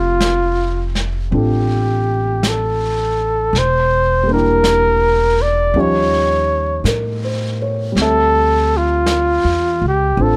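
Tender and intimate, this slow jazz ballad, heard as a short cut from a longer piece, swings its eighth notes gently in four. A bucket-muted trumpet carries the melody up front, its veiled, close-miked tone shaded with light vibrato. Beneath it, a dark concert grand piano offers mellow, short-sustained accompaniment with deep bass and audible action noise, while a woody pizzicato upright bass on steel strings sits forward in the mix. Brushes on a vintage kit join at 0.2 seconds, working the snare and hi-hat with a smooth, rolled-off top. The harmony drifts from Fmaj9 through Em7b5 and Eb9 to Dm11, and the dry, detailed recording keeps every player close at hand.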